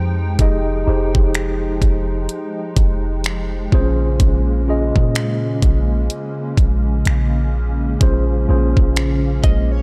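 A mellow tine electric piano, a hollow, flute-like pad with ensemble chorus and a deep, boomy 808-style bass open this late-night, sensual contemporary R&B excerpt over Fm9 and Bbm9 chords, joined at 0.4 seconds by an up-front trap kit of knocking kick, bright hi-hats and finger snaps with a swung sixteenth feel, before a clean, direct-recorded electric guitar with analog chorus slips in brief arpeggios at 9.4 seconds, the whole piece set within a dark digital ambience.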